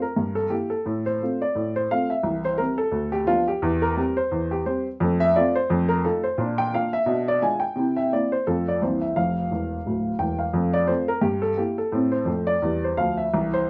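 A brisk 174 BPM swing in 4/4 drives this exuberant stride piano passage in F major, cut from a longer piece. A lone upright piano, worn, woody and slightly detuned, sits up front in a moderate studio ambience, ranging from deep bass to the upper treble through chords such as F, F7, Bb and C7. A short piano fill at 9.5 seconds leads into a restatement of the opening material at 10.5 seconds.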